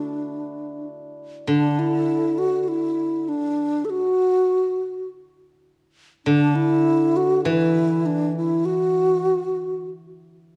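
An airy, hollow alto flute carries a graceful, festive melody in free time in D gong mode, joined at first by a faint, shimmering hammered dulcimer that drops away at 1.7 s, as a silvery, fingerpicked steel-string zither enters up front at 1.5 s with ringing low accompaniment, the whole fragment of Chinese traditional chamber music heard in a moderate recital hall reverb through worn, warbling old cassette tape.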